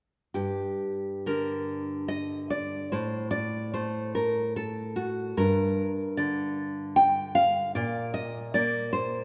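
In a freely rubato three-four sway, this brief, intimate and passionate fragment of a romantic classical guitar piece features a single up-front, warm nylon-string guitar, fingerpicked across a range from low bass to high treble with audible finger squeaks, playing from 0.3 to 9.2 seconds in the moderate reverb of a concert hall.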